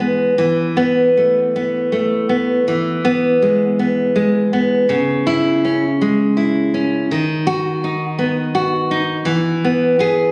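A romantic piece for solo classical guitar, this short excerpt moves in an unhurried 6/8 with a flexible, rubato feel and a tender mood. The nylon-string guitar plays alone for the full 10.3 seconds, fingerpicked and up front, with the full-bodied tone of fresh strings and a finger squeak that brings the player close. Its range sits between C#3 and G#4, and the harmony drifts from a suspended opening through E, C#m and B/D# before settling back on E near 9.3 seconds. A moderate reverb like that of a scoring stage gives the instrument a gentle halo, though the capture has the intimate, slightly informal character of a phone placed in the room. The result feels like a glimpse of a longer piece, tender and warm in spirit.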